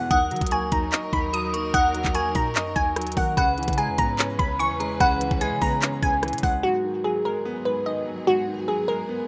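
Knocking kick, crisp hi-hats, handclaps and rim clicks from an up-front trap drum kit drive this menacing, hard-hitting hip hop and trap excerpt at 147 BPM in a half-time feel in G# minor, with a boomy, sine-toned 808-style bass beneath, a glassy, crystalline wavetable pluck carrying the melody through chorus and digital delay, a metallic, inharmonic FM bell ringing a second line with its own chorus and delay, a natural-sounding concert grand piano accompanying, and a lush, bowed symphonic string section holding chords with expressive vibrato, until the bell, drums and bass have all dropped out by 6.6 seconds, leaving pluck, piano and strings in a rough home demo mix with light reverb.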